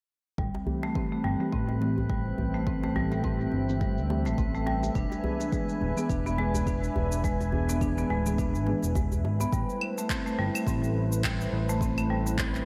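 Bright, 1980s-style digital production with a moderate plate reverb frames this meditative, mystical stretch of organic downtempo, cut from a longer piece, where a detuned analog pad holds sustained chords over a smooth, ring-modulated synth bass and a deep, layered electronic kick, both the pad and bass pumping with sidechain. Woody marimba arpeggios on rosewood bars pass through delay and a low-pass filter, while muted, felt-like synth keys add a dark, warbling grit of vintage 12-bit sampling, and tape-toned electronic cabasa, claves and handclaps sit under gated reverb beside a tight, cracking djembe tucked in the background. A faint glassy texture of drifting overtones hovers from 0.8 to 9.5 seconds, and the djembe and glass both stop at 9.5 seconds as the harmony returns from E7 to Am7.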